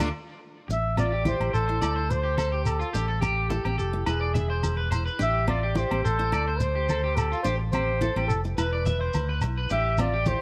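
A dark, distant trumpet with light vibrato and scooped notes carries a jazz-style solo melody over a bittersweet, danceable highlife groove that opens with a band accent, while a slightly broken-up, twangy electric guitar spins arpeggios through lush chorus and tape echo, a bright picked steel-string acoustic guitar with finger squeak comps, a round fingered electric bass sits up front, soft-handed low-tuned congas stay in the background, a grainy shekere joins at 0.7 seconds and ringing agogo bells enter at 1.0 seconds, all under light reverb.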